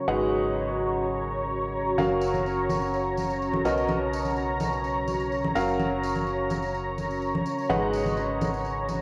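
Feel-good and joyful, this short cut of piano house moves at 126 BPM in F# major, with a clear, worn grand piano riff and a silky, bright analog string pad up front, while a deep, moody sawtooth pad adds dark texture, the piano and both pads given a cassette-tape character and the whole mix a wet spring reverb. A hollow, organ-like FM bass with a fast attack and decaying tone anchors the chords from G#m7 through F#maj7 and Bmaj7, and tambourine and congas, distant as if in a large room, join at 2.0 seconds. A faint electronic swell appears in the background at 8.8 seconds, as the home-recorded sound keeps a homespun charm.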